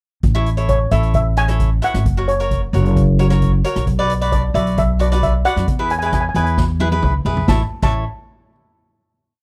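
A festive, bouncy calypso in A major, this short complete piece moves at 133 BPM in a straight 4/4 over a single verse that runs through A, F#, Bm and E before landing on a closing A chord at 7.5 seconds. The upright bass sits up front with a woody, growly pizzicato tone from its steel strings, playing a syncopated figure between F#1 and F#2. A street-band drum kit lays down a calypso groove with a boomy kick, a medium-tuned snare, rim clicks, hi-hat, toms and dark crash cymbals, its airy big-room sound rounded off by a drum fill from 6.6 to 7.5 seconds. The cavaquinho adds crisp, picked rhythmic triad chords between E4 and D5, while the steel pan enters at 0.7 seconds with a motif-based song melody, its double seconds struck with soft rubber sticks for a mellow, shimmering tone. Overall the recording has a dry, close 1970s studio character with small-room ambience, and the pan carries a band-limited, vintage colour.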